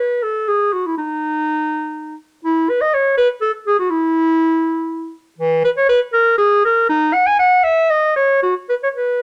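A lone, warm clarinet sits up front in light reverb, playing a flowing, dance-like classical fantasia in a baroque style, tuned slightly below modern pitch. Its line in 6/8 moves with uneven beats and free rubato, ranging from E3 up to G#5 across the full 9.2 seconds of this fragment cut from a longer piece.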